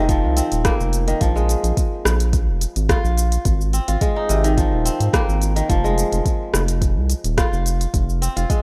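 Organic downtempo in 4/4 at 107 BPM, this short cut from a longer piece has a warm, hypnotic mood and a straight feel, tuned slightly sharp to A4 = 441 Hz. Up front, a bright, crisp kora plays fingerpicked, ringing arpeggios between C3 and F4, trailed by a digital delay. Equally up front, a round analog bass sits deep and dark between Eb1 and Ab2, its fast attack and sustained tone blending square, sine, triangle and sawtooth shades with a wave-folded edge. An electronic kick drum with a soft, overdriven thump joins at 0.1 seconds alongside an organic electronic kit of smooth hi-hats, rim clicks and shaker, both overdriven and re-recorded in a small room. The harmony moves from F5 to Bb5 at 1.2 seconds and on to Ab at 3.5 seconds, all within light reverb and a rough home-demo mix.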